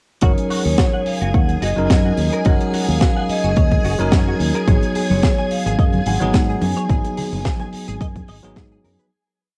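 Nu-disco with a cosmic, sleek mood, this short, complete piece sits in a drop from start to finish, with a lightly swung groove and a fade-out beginning at 6.2 seconds. An overdriven, punchy electronic kick pounds out four-on-the-floor up front, while a dry, high-tuned funk kit adds closed and open hats and a disco backbeat on the snare, and a growly, bright fingered bass plays a funky syncopated line. A bell-like tine electric piano holds drop2-voiced chords with syncopated pushes and sidechain pumping, under a lush string machine whose soft-attack sawtooth chords carry a sub octave, ensemble chorus and a held high note. In the background, a clean, direct electric guitar picks a compressed 16-step sequence through chorus, and from 4.7 seconds tube shaker and congas join with soft hands and a vintage, band-limited tone. On top, a ringing, metallic vibraphone struck with hard mallets, its motor off, states short call-phrase motifs in a boxy small room. 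The whole mix carries the character of a home cassette recording with light reverb.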